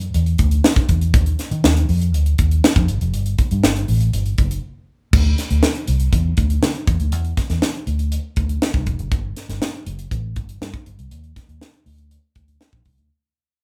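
A straight 4/4 groove at 120 BPM drives this upbeat, glossy slice of polished 1980s jazz-funk pop, cut from a longer piece. Only two parts play throughout, both up front: a vintage muted fingered electric bass and a crisp fusion drum kit. The bass is dark, round and foam-muted, an amped tone with a punchy attack that ranges from E1 up to Eb3. The acoustic kit sounds airy and polished, pairing a high-tuned snare with a punchy kick alongside hi-hat and crash cymbal. Near the end of the opening section, a brief break arrives at 4.6 seconds, and from 5.1 seconds a new section begins as the music fades out through to 13.1 seconds. The band plays live in one small room, whose moderate reverb adds a short, natural sheen.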